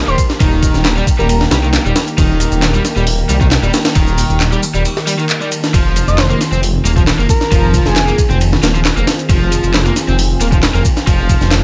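A straight 4/4 breakbeat drives this funky, raw excerpt at 135 BPM in F minor. The sampler-style kit sits up front, gritty and pitched up, with a thumpy kick, a high-tuned snare, hi-hat and ride cymbal, while layered electronic shaker and handclaps add a tape-warm, small-room texture. Beneath them, a thick, menacing detuned saw bass beats with tube saturation, and an overdriven, double-tracked electric guitar picks a riff through its mid range. Deep in the background, a swirling analog pad holds sustained chords with phaser, chorus and sidechain pumping. An airy, dreamy lead with a telephone-filtered tone, chorus and delay glides briefly at the start, then returns at 6.1 seconds after a break at 4.9 seconds and a shift from Eb to Fm7 at 5.7 seconds, all in a dry mix.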